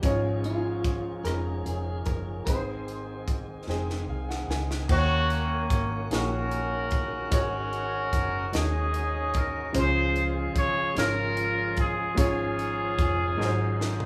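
Slow gospel in 6/8 at 49 BPM in Db major, jubilant and hopeful, cut from a longer piece. A clear, worn baby grand piano carries the accompaniment throughout with long sustain, while a tonewheel organ holds sustained chords in the background through an overdriven, slow rotary speaker. A dark, foam-muted fingered electric bass sits round and punchy beneath a crisp, up-front acoustic drum kit with a high-tuned snare, punchy kick, rim clicks, toms, hi-hat and crash in a pumping small room. A clean, picked electric guitar with tremolo carries the melody from 0.5 to 4.0 seconds, and after a drum and piano fill, a tight, vintage horn section takes the melody up front from 4.9 seconds to the end. The chords move from Db/Ab through Ebm7, Ab7sus4 and Dbmaj7 before a closing drum fill over Ab7, all in a rough home demo mix with small room ambience and little reverb.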